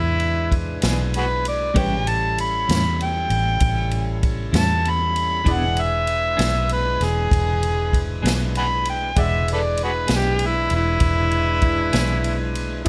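An overdriven harmonica takes the lead in this swaggering, soulful slow blues excerpt, its gritty, amplified tone full of vibrato, scooped notes and tongue slaps as it solos up front across the full 12.9 seconds. The tempo sits at 65 BPM in a straight 12/8 in E mixolydian, with the harmony moving from E7 to A7 at 1.7 seconds and back to E7 at 5.5 seconds. A vintage muted fingered electric bass sits close behind, dark, round and foam-muted, while a swinging big-band drum kit enters at 0.2 seconds with a punchy kick, medium-tuned snare and dark ride cymbal in an airy hall. A reedy tonewheel organ holds sustained chords through light overdrive and a slow rotary speaker, with audible key click. In the background, a brilliant grand piano with short sustain adds accompaniment, and a clean, picked electric guitar with tremolo joins at 0.8 seconds, all set in light reverb.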